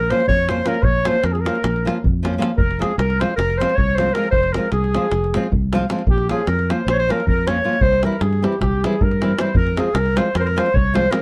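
A clear clarinet carries the melody from the first moment of this short cut from a longer Balkan wedding-band piece, with a mellow, distant trumpet adding a second line in the same register. Beneath them a fingered electric bass sits up front, its round, foam-muted tone direct and amped, while a deep davul sounds close and dry. A fingerpicked nylon-string guitar enters at 0.1 s with an acoustic, classical-style accompaniment, placed forward in the mix. The tune runs in 9/8 at 309 BPM counted in eighths with a straight feel, moving through Bb minor, F minor and C, and the opening passage starts again at 9.6 s. The mood is virtuosic and restless, and the production is dark and warm, with light reverb and some lossy compression artefacts.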